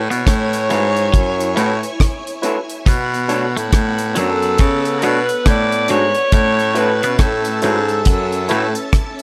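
The baritone saxophone and a shimmering string-machine violin line open this short cut of a longer piece together. It is a bittersweet, smooth lovers rock reggae groove at 69 BPM in 4/4, with a swung sixteenth feel. The raspy, gritty baritone carries the bass up front with a light vibrato, while the deep, dry reggae drum kit sits equally forward with a tight kick, hi-hat and rim click. From 0.3 seconds a warm alto saxophone takes the melody, distant and roomy with vibrato and a tape echo. In the background, a twangy, compressed clean guitar picks a riff with a warbly pitch drift, and a barky, lightly overdriven tine electric piano adds accompaniment through a combo amp. A slightly broken-up, lo-fi guitar through a small old amp plays stabs, and the soft-attack sawtooth strings sustain a vintage ensemble-chorus shimmer. The harmony moves from A6 to Bm7 and back to A6, all in a light studio reverb.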